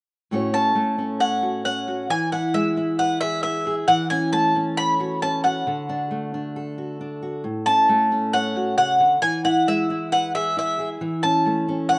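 Folk in A major at 135 BPM, hopeful and nostalgic, with a fingerpicked steel-string acoustic guitar laying down a dark, up-front accompaniment from 0.3 seconds under plate reverb. A bowl-back mandolin enters at 0.5 seconds carrying the melody high in its range, its warm double strings picked up front and dressed in plate reverb and tape echo. The chords move between A6, E and D in a rough home-demo sound with a wet studio room, and this cut from a longer piece runs to 12.0 seconds.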